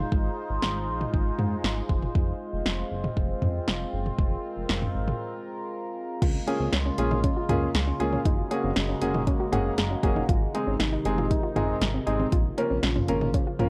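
Synth-pop with an upbeat, bright feel, this excerpt opens on a resonant, evolving pad with chorus and phaser, a glossy, nasal chorused synth bass and a punchy, deep-kicked house drum kit with cowbell and toms, then after a break at 5.2 seconds a soft round pluck arpeggio drifts in behind at 6.2 seconds and an intimate concert grand piano with audible action noise joins up front at 6.5 seconds, adding a fill at 9.3 seconds, all colored by worn, warbling cassette-tape pitch drift and light digital ambience.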